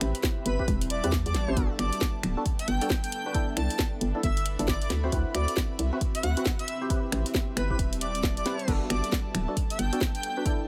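Soulful and sunny, this short excerpt of two-step UK garage in G major swings at 135 BPM, with a punchy layered kick and a house kit of cracking snare, metallic hats, finger snaps and crash driving a hollow, bouncy FM bass warmed by tube saturation, while mellow chorused organ stabs and a dreamy, vibrato-tinged lead float over a breathy, warbling sidechain-pumped pad and a very quiet ethereal pad, all moving through Am7, Gmaj9, a rootless Cmaj13 and D13 in light reverb.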